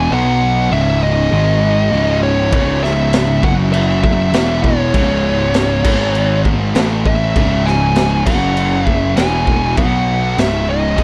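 A dark fuzz lead guitar carries a brooding melody up front over two thick, fuzz-laden rhythm guitars, a bright double-tracked overdriven guitar and a growly picked bass churning a sludgy stoner-doom riff in a small, dark room, until a raw garage drum kit with a boomy kick and high-tuned snare crashes in up front at 2.5 seconds.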